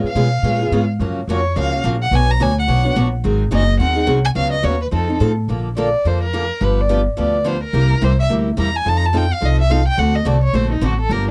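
A dry, close 1970s-style studio sound frames this swinging, playful stretch of acoustic string swing at 214 BPM, where a boxy, freshly strung parlour steel-string guitar and a woody, thumpy pizzicato upright bass on gut strings sit up front alongside a warm, nasal, expressive bowed violin, rich in vibrato and portamento, that carries the melody in F# major before taking a solo as the harmony shifts to Bb major at 5.5 s.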